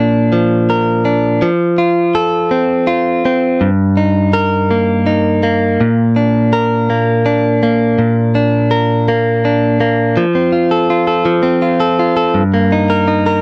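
A clean electric guitar, recorded direct and picked, opens this short pop excerpt alone and carries it from start to finish. The mood is tender and romantic, moving at 55 beats per minute counted in dotted quarters over a straight 6/8 lilt in Bb major, tuned slightly below standard pitch to A4 = 435 Hz. The guitar ranges from G2 up to Bb4, sitting up front with a compressed, warm tone and a light touch of reverb. Its harmony moves from Bb to F at 1.4 seconds, then to Eb over G, back to Bb, and around again through F at 10.2 seconds before settling on Eb over G. The sound is dry and close, like a 1970s studio recording, giving the lone instrument an intimate presence.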